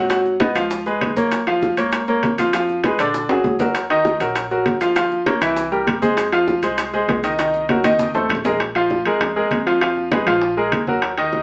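Heard through a narrow, AM radio-like sound, this driving, passionate salsa excerpt captures a band playing live in one room, wrapped in a wet studio reverb. Up front, a bright grand piano carries the accompaniment with a brilliant, polished, present tone and short sustain, moving through minor-key changes that resolve onto open Bb5 chords near the end. Close and dry, ringing congas played with soft hands and metal-shell timbales drive the groove, while round bongos sit further back, both conga and bongo tuned low. Grainy, mellow maracas shake in the background until 8.6 seconds, and a woody, thumpy pizzicato upright bass with steel strings anchors the bottom from a distance. Drum fills at 3.3 and 7.7 seconds push the momentum into each new phrase.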